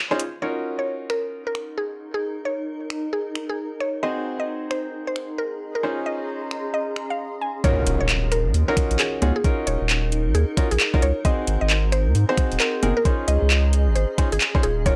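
An overdriven garage drum kit sits up front from the start, its metallic hats, finger snaps, handclaps and congas riding a skippy, swung two-step UK garage groove with a late-night mood. Short, bright baby grand piano stabs pass through an analog delay, while a woody, round FM synth pluck carries the melody with a chorus and cassette-tape tint over an Ebm9, Ab7 and Dbmaj9 progression. From 1.5 seconds a cloudy granular pad drifts in beneath, blurred and evolving, with its own reverb and sidechain pumping. At the drop at 7.6 seconds a knocking, overdriven electronic kick and a very quiet impact arrive, followed shortly by a deep, thick, saturated sub bass that pushes to the front of the mix. The recording is a dry, gritty hardware take with a cassette character, and this excerpt is cut from a longer track.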